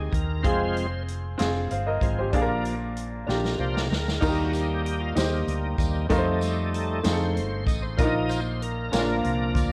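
A bright, shouting tonewheel organ with key click, light overdrive, chorus vibrato and slow rotary speaker carries a hopeful, soulful slow gospel passage in 6/8 at 64 BPM, over a clear, up-front baby grand piano, a dark, round hollow-body bass, and a big-band drum kit with a punchy kick that plays a fill at 3.3 seconds before a jingly, distant tambourine enters at 4.2 seconds, all through Fm, Bb, Eb and F7 chords under light reverb and a worn, warbling cassette-tape pitch drift.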